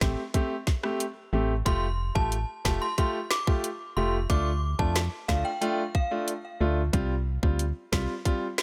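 An overdriven electronic drum kit sits up front in this sultry, bouncy dancehall excerpt, with tight kick, woody snare, dark hi-hats, rim clicks and finger snaps. A hollow, percussive FM bass with an organ-like tone and a smooth, vintage grand piano that pumps with sidechain carry the Am7, Fadd9, Dm and Csus4 changes. From 1.7 to 6.1 seconds, a mellow, inharmonic synth chime rings out the melody through ensemble chorus and delay, set in a digital ambience.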